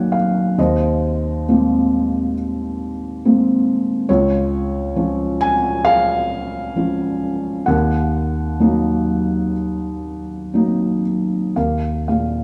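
Rubato phrasing in an unhurried 4/4 carries this reflective, dark piece of lyrical classical solo piano, a short passage cut from a longer work, where a felt-muted upright with a mellow, intimate, thick-felt tone plays alone from 0.0 to 12.4 seconds across a span from Db2 to Ab5, its harmony moving from Ebm through Abadd9/Eb and Db back to Ebm before resting on Ebsus2 at 11.6 seconds, all set in a moderate plate reverb.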